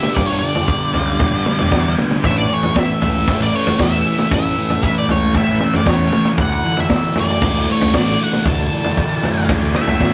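A rough rehearsal-room sound with tube saturation and moderate studio reverb frames this dark, hypnotic psychedelic rock excerpt at 116 BPM in 4/4, where an up-front, double-tracked thick fuzz guitar with phaser drives a riff over G, A and Dadd9 as an octave-fuzz lead guitar with wah carries the melody, a punchy vintage drum kit with a high-tuned snare and rolled-off top plays kick, snare and toms, an overdriven picked bass enters round and low at 0.2 s, a sawtooth string machine voicing violas holds soft sustained chords with ensemble chorus in the background, and a jingly tambourine joins at 6.9 s.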